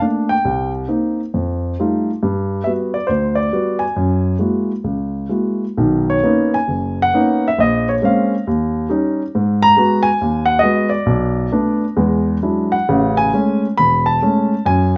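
Swung eighths at 136 BPM in 4/4 give this solo jazz piece an easy lilt, loosened by rubato, while the mood stays sophisticated and playful. A lone grand piano, dark and mellow with a short sustain, sits up front in light reverb and ranges from E1 to B5, moving through Cm7, F9, Gmaj7 and F#9 before settling into B major at 5.8 s on a Bmaj9. From there the harmony passes through A#m9, D#7, G#m7 and Bm7 to E9 and Amaj7 in a passage cut from a longer performance.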